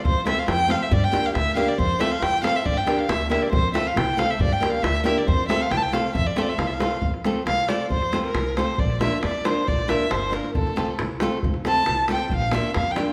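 A straight 2/4 pulse from a tight, vintage-toned davul and a woody, thumpy pizzicato upright bass drives this exuberant, festive Balkan wedding-band excerpt, where a bright, fingerpicked flamenco guitar with audible finger squeak accompanies an up-front, dark bowed violin whose vibrato and portamento bloom into an expressive solo from 7.0 s, the whole band sitting in a wet recital-hall reverb.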